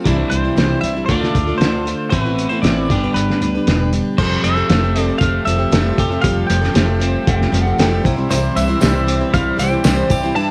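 Folk rock with a heartland rock pull, this nostalgic, open-road excerpt moves at 116 BPM in a straight 4/4, built on a boxy plugged-in steel-string acoustic guitar, a twangy, scooped electric guitar riff at the edge of break-up, a woody, growly pizzicato upright bass, and a muffled, cloth-damped thuddy drum kit with a fat snare and dark cymbals sitting up front, while a clean, compressed twelve-string electric guitar carries the melody. At 4.2 seconds a very quiet, earthy chamber string section enters with sustained chords as the harmony settles on Fadd9, a dark slide guitar with analog delay slips in briefly in the background at 7.3 seconds, and a jingly tambourine joins at 8.3 seconds. Most parts carry a gritty cassette tape character, and the whole sits in light reverb and studio ambience with the lo-fi feel of a home recording.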